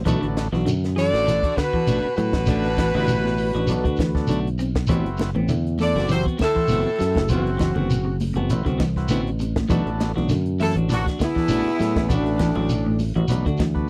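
A dry, close 1970s-style studio sound frames this driving, funky afrobeat excerpt at 100 BPM, with a lightly swung 16th feel moving from Bm7 to Am69 and back. A dark, round fingered electric bass sits up front beside a compact cocktail drum kit with a punchy kick and high-tuned snare, while a buzzy vintage combo organ, a hollow-body semi-hollow guitar playing picked arpeggios, clean electric guitar stabs and a grainy, distant shekere fill out the groove. At 1.0 seconds a tight, warm horn section takes the melody, backed in the background by a bright alto saxophone and a raspy, gritty baritone saxophone, and very quiet, thick-skinned congas join at 4.9 seconds.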